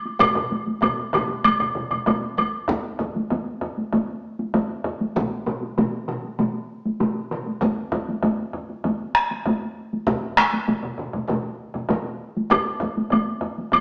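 The recording has a live, single-room feel with a wet, large-studio reverb and a small-speaker character. It is a driving, ceremonial passage of Japanese traditional taiko drum music in a straight 4/4, cut from a longer piece. A taiko ensemble struck with heavy sticks sits up front alongside solo taiko drums, which sound close and dry. A second ensemble, also on heavy sticks, sounds as if it is in a small room, and a third plays with hard sticks, close and dry. A vintage, band-limited woodblock with a woody tone cuts through at the opening, drops out at 2.5 seconds just before the music moves into its longer second section, and returns near the end at 12.5 seconds.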